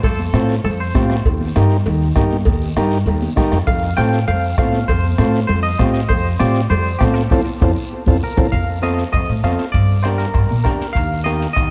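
A driving, danceable straight-feel cumbia groove rides on a distant soft-beater bombo, bright high-tuned congas played with hard hands, ringing cowbell and timbales and a raspy guiro, all beneath a woody, up-front pizzicato upright bass and a mellow vintage combo organ, while a clean, fingered, twangy electric guitar with tremolo and dub echo drops out at 1.1 seconds and returns at 3.7 seconds over the F, Eb and Gm changes, with a drum fill and a band accent marking the shift into a new section at 8.5 seconds in an echo-heavy, cassette-tape mix.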